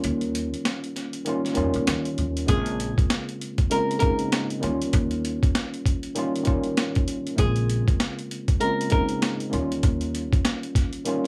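A gritty, pitched-down boom-bap kit with a thumpy kick and high-tuned snare opens this reflective hip-hop passage at 98 BPM with a 61% swing on the 16ths. It comes alongside a woody, gut-strung pizzicato upright bass and a worn, slightly out-of-tune tine electric piano, lightly overdriven and filtered as if heard through its built-in speakers, vamping between Eb7 and Bbm7. Very quiet finger snaps sit in a small room, and at 2.5 seconds a boxy, fingerpicked flamenco guitar takes a narrow melody up front, with audible finger squeak and a slapback echo, all within a light reverb in this section cut from a longer piece.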